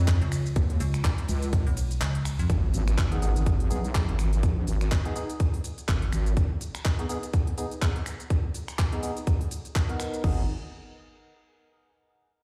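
A very quiet, dark sawtooth pad and a heavy, detuned wobble bass with chorus and overdrive open this bouncy, gritty, swung bass house excerpt, joined by a tight, up-front kick, a tape-toned garage kit of crisp hats, finger snaps, handclaps, shaker, ride and crash, and a digital FM bass with a metallic edge. The kick briefly drops out from 2.0 to 2.5 seconds, a faint electronic impact lands at 2.5 seconds, and a hollow, ring-modulated organ stab with lush chorus and dub echo enters at 3.1 seconds under a filter sweep, while the mix rings through a stone room as if played on a big sound system.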